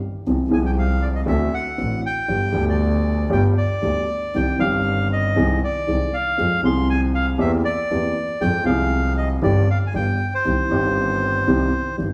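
Played with a rubato feel at 118 BPM in 4/4, this tango in C minor moves with a tense, sultry air through a short passage cut from a longer piece. A woody upright piano carries the accompaniment up front from 0.3 seconds, alongside a single bowed double bass that sounds biting and nasal, with an airy bow, light vibrato and an earthy, close presence. The reedy bandoneon takes the melody in its upper register from 0.5 seconds, sitting up front with a boxy small-room character. The harmony moves from Fm/C through D7 and G to Cmadd9, then winds through Ab/C, Fm and C7/E before a Gsus4 resolves to G and settles on Cm at 10.4 seconds. The band plays live together in one room, wrapped in a wet, large studio reverb that lends the ensemble a spacious glow.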